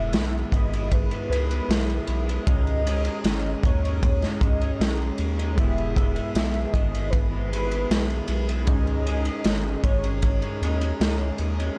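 A straight, unhurried 4/4 pulse comes from a raw garage drum kit, its punchy kick, medium-tuned snare and dark ride cymbal sitting up front with a gritty, saturated edge and a pumping small-room sound. This short cut from a longer piece of mellow, hazy indie and bedroom pop moves between E and C#sus2 chords. A round analog bass holds down the low end with a deep, sine-like tone, while an electric guitar through a small old amp plays accompaniment in a bright, twangy, slightly broken-up voice, its ensemble chorus and warbly pitch drift adding lo-fi wobble. On top, a velvety synth lead carries the melody, smooth and full-bodied with detuned unison, vibrato, analog chorus and delay. At 5.6 seconds, very quiet chorused retro synth keys join with a glossy pulse-wave tone and a filter sweep, and studio reverb with a dark, warm production colours the blend.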